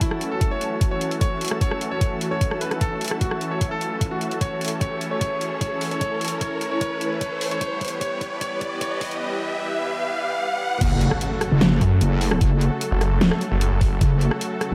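A saturated wobble bass hits at the drop at 10.8 seconds, joined at 11.8 seconds by a snarling, growling distorted saw bass, in this chaotic, heavy half-time wobble dubstep excerpt in F# phrygian at 150 BPM. This follows a build-up where a clear concert grand piano melody with digital delay floats over a lush supersaw pad, a cloudy granular pad, a rising riser and impact, a knocking electronic kick and a dubstep kit with a huge snare and bright hats, all moving from F#m7 to Em before landing on F#m.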